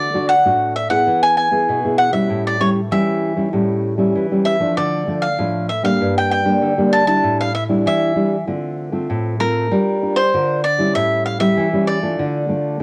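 From the first moment, a crisp, picked cavaquinho and a full-bodied, thumb-plucked nylon-string guitar sound together, both up front, in this lively yet yearning samba excerpt in D minor at 97 BPM in a straight 4/4. The bright cavaquinho carries the melody in a high register, from Bb4 to A5, while the classical guitar, with the fresh-string sound of new strings and a cassette-tape colour, supplies the accompaniment from G2 up to Bb4. The harmony opens on D and E before settling on A7, then moves through a minor progression of Dm, Gm, A7sus4, Dm7 and Gm7, and arrives on A7 at 11.0 seconds before resolving to Dm at 12.2 seconds. Both instruments play throughout the 12.8-second passage, which is cut from a longer piece. A moderate studio reverb gives the pair a modest sense of space, and the home cassette recording lends the whole an intimate, homemade character.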